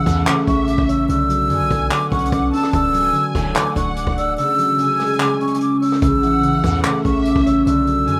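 A rough home-demo sound, dusted with vinyl crackle and light reverb, frames this short, wistful and dreamy hip hop piece with a trap edge and a half-time feel. A breathy, hollow metal flute carries the melody high up with vibrato and tape echo, while a lush, distant violin section plays a quiet second line beneath it, also touched by tape echo. An up-front concert harp rings out thumb-plucked accompaniment, and a deep, sine-toned 808-style bass with fast, decaying notes anchors the low end. A small-room jazz kit with a warm, rolled-off top, played with brushes, adds hi-hat, rim click, handclaps and a boomy kick, though the kick falls silent from 4.4 to 6.0 seconds. A very quiet, bright, detuned sawtooth polysynth with a resonant filter sweep, chorus and phaser appears only in a few brief stabs.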